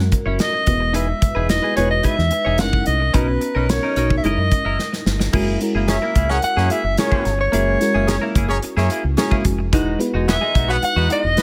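A warm soprano saxophone carries the melody from the first moment of this excerpt, its jazz-style line marked by light vibrato and scooped notes, sitting up front yet with a roomy, distant air. Around it, a polished 1980s jazz-funk pop groove moves at 109 BPM in a straight 4/4 with an urban, nocturnal mood, the chords shifting from F#7 through Emaj7, F#13 and Bmaj9. A bell-like FM electric piano sparkles with tremolo and lush chorus, while a clean, compressed electric guitar picks a twangy riff through analog chorus. Underneath, a dark, round fingered electric bass sits up front beside a modern studio drum kit with a tight kick, a medium-tuned snare, crash and hi-hat, the kit drenched in gated reverb. A drum fill at 4.8 seconds leads into the next section, and at 5.9 seconds a horn section joins with a second line in octave doubling and light vibrato, the whole passage wrapped in studio reverb.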